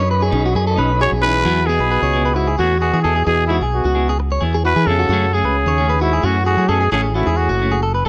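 A brief organ chord, turning through a slow rotary speaker, opens this joyful highlife fragment at 132 BPM in E major alongside a bright, twangy guitar picking arpeggios at the edge of break-up and a dark, round fingered bass up front. A clean guitar adds picked accompaniment in the background from 0.3 seconds, and the organ drops out by 1.4 seconds. From 1.0 seconds a raspy, growling trumpet carries the melody with light vibrato, while a breathy trombone with scooped notes and a soft attack sings a mellow second line behind it. The chords move through add9 colours, from Badd9 to Eadd9 and F#madd9 before settling on A, all in light reverb.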